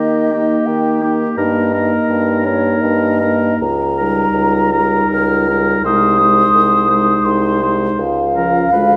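A pure, hollow concert flute with vibrato and a soft attack sings the serene, lyrical melody of this slow, romantic classical wind quintet movement in 3/4, played with uneven, rubato beats, as a distant oboe carries a second line, a dark French horn and a smooth-topped clarinet set in the background accompany, and a mellow bassoon with light vibrato sits up front on the bass, all blooming in a wet scoring-stage reverb across this 9-second passage from a longer piece.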